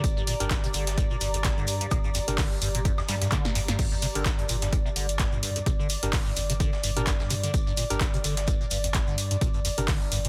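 A gritty, driving acid house excerpt in G minor at 128 BPM with a 16th-note swing opens on an up-front, punchy electronic kick, a tape-warmed analog drum machine playing crash, handclaps, hi-hat, snare and woodblock, a very quiet compressed breakbeat sampler kit with hi-hat, high-tuned snare and tambourine, a faint grainy shekere, a squelchy, resonant square-wave acid bass riff with phaser and chorus, a deep round sub bass with tube saturation and sidechain pumping, and a detuned, warbling sawtooth analog pad that also pumps, while a blurred granular cloud pad drifts in the background until 3.8 seconds, as a drum fill ends, and an overdriven, barky tine electric piano through a combo amp fires dub-echoed stabs from 0.4 seconds, all within a dense, heavily limited modern master.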